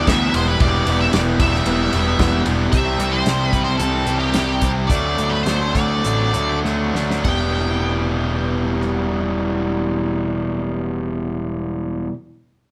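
Classic rock in E minor at 96-113 BPM, this gritty, brooding live-room excerpt sets a dark octave-fuzz lead guitar melody over a biting overdriven guitar riff, a bright, compressed distorted electric guitar and an up-front fuzz picked electric bass, while a very quiet, barky reed electric piano adds accompaniment only until 2.6 s and a dry, damped 70s drum kit with dark cymbals and a tight kick plays until 9.0 s. The band eases its pace from 2.7 to 7.3 s over C and D chords before a drum fill leads back to Em.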